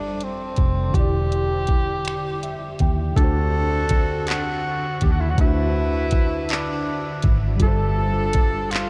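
Soaked in a huge ambient reverb, this dreamy, intimate excerpt of a slow six-eight R&B piece moves at 54 beats per minute in dotted quarters, with a straight feel. A breathy tenor saxophone carries the melody up front. Its mellow subtone, soft attack, vibrato and scooped notes give it a whispered, vintage jazz voice, colored by analog delay. Beneath it, a worn, slightly out-of-tune tine electric piano plays through a combo amp with ensemble chorus and adds a fill at 2.1 seconds, while a dark, round, foam-muted fingered electric bass anchors the low end. The smooth, produced R&B drum kit enters at 0.2 seconds, with finger snaps, handclaps, warm hi-hat and a knocking kick sitting up front. From 3.2 seconds a clear, tight jazz horn section adds stabs as the harmony moves from G13sus4 and Em7 to D7, settling on G9sus4.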